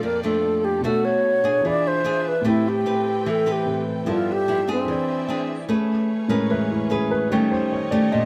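An alto flute leads this romantic, relaxed bossa nova fragment at 148 BPM in 4/4 with a straight feel, carrying the melody in a pure, mellow voice with vibrato and a crisp attack, close-miked and up front. A fingerpicked nylon-string guitar, small and acoustic, sits equally near beside it, while a grand piano adds intimate, natural accompaniment with its action noise audible. A symphonic string section holds bowed chords beneath them, lush and focused with a smooth top and vibrato, and lies well back in the balance. The harmony moves through rich colours such as Bbmaj7, E7b9, Am9 and G13. The flute drops away at 5.5 seconds, and from 5.7 seconds the piano takes a solo over Amaj9 and D#7#11 until the fragment ends at 8.3 seconds. Close, detailed microphones and a moderate studio reverb keep the sound clear and softly rounded.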